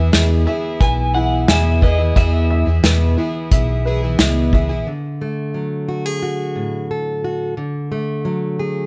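A bright, twangy electric guitar melody, slightly broken-up through a small old amp with tremolo and tape echo, opens this nostalgic, warm indie folk excerpt at 89 BPM over E, alongside a shimmering, octave-doubled twelve-string acoustic, a dark, worn, slightly detuned upright piano playing arpeggios with audible action noise, a round, punchy hollow-body bass, and an airy, up-front drum kit played with bundle sticks, until around 4.9 seconds the harmony moves to D and a fingerpicked steel-string acoustic guitar takes over alone in light reverb.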